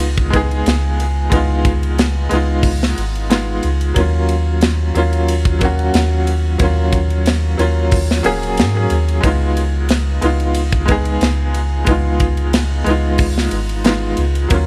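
A bright upright piano, a soft dub sub bass and a tight metal drum kit all begin together at 0.0 seconds in this dark, hypnotic trip hop fragment cut from a longer piece. The tempo sits at 91 BPM in 4/4, with a light swing of 54% on the 16ths. The upright piano carries the accompaniment with a woody, intimate tone, audible action noise and long sustain, colored by tremolo and tape echo as it moves through Db7, Ebm7 and back to Db7 at 9.2 seconds. Beneath it, the sub bass is deep and round with a fast attack and sustained notes, sitting up front in the mix. The acoustic kit of hi-hat, a tight kick, ride and a medium-tuned snare sounds up front and mid-forward in a studio room. Vinyl crackle and small room ambience surround the whole recording until it ends at 14.7 seconds.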